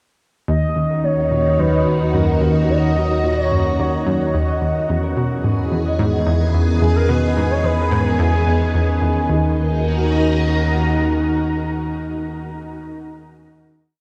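A bright, swirling string machine sits up front, its sawtooth chords shifting slowly under an ensemble chorus and a phaser's moving notch, setting the cosmic, hypnotic tone of this short ambient space-music piece in Eb phrygian at 109 BPM. Beneath it, a round, wave-folded analog pluck with a fast attack and decaying filter repeats a 7-step sequence that drifts against the 4/4 bar, colored by chorus and analog delay until it stops at 9.6 seconds. A thumb-plucked concert harp rings in the background with its own 10-step arpeggio loop and analog delay, while an evolving, warbling analog drone holds the root in the bass with pulse-width modulation and a long release. Over the top, a smooth, expressive portamento lead sings a free melody with vibrato, lush chorus and analog delay. The harmony moves from Ebm to E and back to Ebm, settling on a final chord at 9.3 seconds, all within a dreamy mix soaked in a huge, wet reverb.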